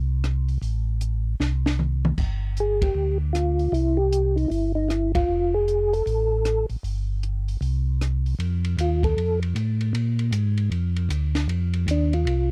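A soft, flute-like tonewheel organ carries the melody in this bluesy, greasy soul jazz organ trio excerpt, its clean tone marked by second harmonic percussion, chorus vibrato and a slow rotary speaker, and it sits up front from 2.6 seconds. Underneath, a second, mellow tonewheel organ plays the bass line from the very start, round and dark with audible key click and its own slow rotary swirl. A compact cocktail drum kit with a high-tuned snare, punchy kick and rolled-off top swings the 4/4 groove at 154 BPM in F mixolydian, with a drum fill early on and band accents hitting together. The harmony moves through rootless and open chords and a brief break before settling into a blues-flavoured F7 to Bb7 movement, where an organ solo takes over at 8.4 seconds. The sound is dry and close, like a 1970s studio session, with the bass organ and melody organ sitting level and the drums a little further back.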